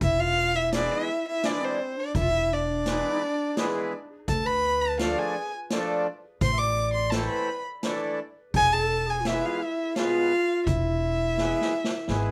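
A dark, woody bowed violin leads this soulful, bittersweet klezmer piece, played by a single player with vibrato and placed up front as it carries the melody. Beneath it, a clarinet in classical style adds a warm second line, touched with tape echo. An upright bass played pizzicato on steel strings anchors the low end, while a reedy, full accordion, also up front, enters at 0.7 s with rich accompaniment. A small-room street-band drum kit, with a boomy kick, a medium-tuned snare, hi-hat and a rolled-off top, keeps a straight 3/4 pulse at 84 BPM in E phrygian dominant, moving through E, Dm and Am before returning to E. Moderate studio reverb surrounds the parts, and a drum fill at 11.4 s closes this section cut from a longer piece.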